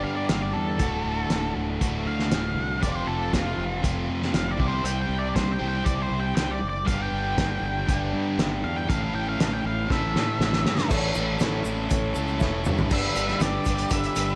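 A big arena sound with concert-hall reverb frames this confident, swaggering classic rock excerpt at 119 BPM in straight 4/4. A dark, octave-fuzz lead guitar carries the solo melody over riffs from a biting overdriven guitar and an overdriven semi-hollow guitar sitting in the background, while a growling fingered bass and an up-front, cloth-damped drum kit with a fat snare, tight kick and muffled cymbals drive the chords from G through D, F, C and A, with drum fills marking the turns. At 10.9 seconds a grand piano and a grainy, close tube shaker join quietly behind the band, and at 12.9 seconds a second fuzz guitar line enters in the background as the chords return to G.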